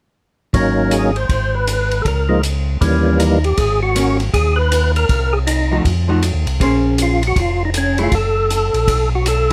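Close, detailed and nearly dry, this excerpt of a soulful, swinging soul jazz organ trio moves at 158 BPM in Ab mixolydian with a 64% swing on the eighth notes. A fat, lightly overdriven tonewheel organ with third-harmonic percussion, key click, chorus vibrato and a slow rotary speaker carries the melody up front, while a second tonewheel organ, round and mellow through its own slow rotary, plays the bass. A compact cocktail kit with dark cymbals and a punchy kick keeps time on hi-hat, ride and kick in a small room, and at 4.0 s a clean, picked, hollow-body archtop guitar adds accompaniment as the harmony moves through chords such as Ab9sus4 and F7b9.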